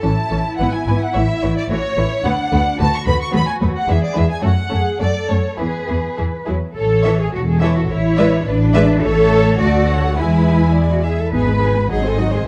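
All five bowed string sections begin together in this quick, graceful and lively classical-period movement for string orchestra, moving at 99-112 BPM in 2/4 with a rubato feel. A lush symphonic violin section carries the melody over a smooth chamber violin second line, a clear viola accompaniment, and a bass formed by an even, warm cello section and an up-front, focused chamber double bass section, all played with vibrato. Moderate reverb in a large studio gives the dark production its space, and a new section begins at 6.8 s, closing on G#m and G#7 chords as the passage is cut from the longer piece.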